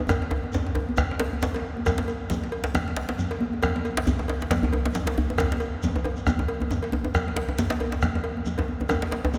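A deep, up-front djembe leads this festive, driving West African drum ensemble at 136 BPM, with a light swing on the sixteenths, joined by a second, band-limited djembe struck with hard hands in the background, a round bombo, bright high-tuned congas, a metallic cowbell and a grainy shekere. A drum fill opens the passage at 0.1 seconds before the main groove settles in at 1.9 seconds, and another fill arrives at 8.6 seconds. The whole ensemble sits in the long, wet reverb of a church or concert hall, in a short cut from a longer piece.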